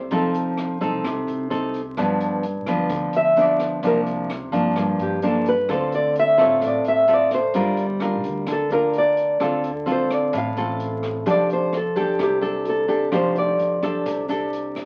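Sophisticated and sunny, this bossa nova excerpt moves at 129 BPM in F major, with an up-front, full-bodied fingerpicked nylon-string guitar laying down deep classical-toned chords from F7 through Dm7 and Gm7 to a closing F69. A second, darker fingerpicked nylon-string guitar carries the melody with audible finger squeak, sounding briefly at the start and returning at 3.2 seconds for the rest of the clip. Behind them, a woody pizzicato upright bass and a natural jazz kit with hi-hat, rim click and a boomy kick keep time, all set in a small room and colored by the crackle of a very old 78 rpm record.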